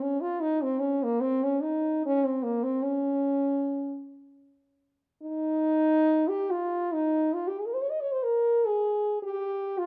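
A lone French horn opens this short classical excerpt, playing alone from 0.0 to 9.9 seconds in an expressive, freely phrased manner. Its tone is mellow with a soft attack, spanning Bb3 to Eb5 with a lyrical, nostalgic character. The pulse sits around 69-75 BPM in 4/4, but the rubato feel keeps the time flexible and songlike. The horn is placed up front yet carries a distant, roomy quality, set in a moderate large-studio reverb with a 1.4-second decay. The overall production leans dark, giving the fragment a reflective, inward mood.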